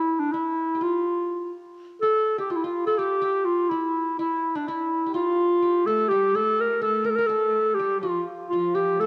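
Turkish makam ensemble music in a straight 9/8, longing and melancholic, cut from a longer piece, where a mellow, soft-attacked classical clarinet sings the melody up front through analog delay, a fingerpicked qanun with bright-edged triple strings sits far beneath it as a second line, and a lush, bowed symphonic cello section with focused vibrato joins at 5.9 s, all heard through the cassette tape of a home recording in a moderate spring reverb.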